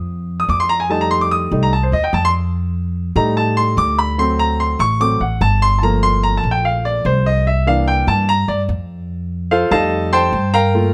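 A straight 4/4 pulse drives this lively, danceable jazz fragment, cut from a longer piece, with a woody, pizzicato upright bass sitting up front from the first moment. At 0.4 seconds a warm baby grand piano enters, equally close and natural in tone with a short sustain, taking the solo spotlight over a harmony that moves from F9 through D7, Gm7 and C9 before returning to F9. The dry, intimate sound keeps both instruments crisp and present.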